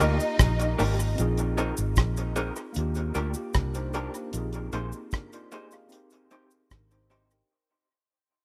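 A straight 76 BPM lovers rock reggae groove in 4/4 sets a romantic, tender mood, built on a dark, tight-kicked drum kit with hi-hat and rim click and a round, foam-muted electric bass up front, with a worn, slightly out-of-tune tine electric piano, slightly broken-up picked guitar stabs with tremolo and dub echo, a faint cabasa, and a lush bowed string section with dub echo that drops out at 1.2 seconds as the chords move from Ebmaj7 through Bb9sus4 to Abmaj7 and the rough home-demo mix fades out.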